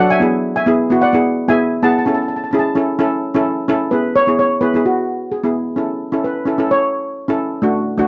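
A lead steel pan carries the melody in this festive, bouncy calypso, its mellow, airy tone coming from soft rubber sticks and sitting up front in the mix. Beneath it, a double seconds pan supplies the accompaniment, struck with hard rubber sticks for a more brilliant tone that is also placed close and forward. The two metallic, shimmering voices move over a lightly swung feel, with the harmony alternating between E and A throughout. A steel pan solo takes over at 3.9 seconds, and after the melody part drops out at 6.9 seconds the accompaniment carries on alone until the close at 8.1 seconds. The short excerpt has the dry, intimate sound of a 1970s-style studio recording, touched by light reverb.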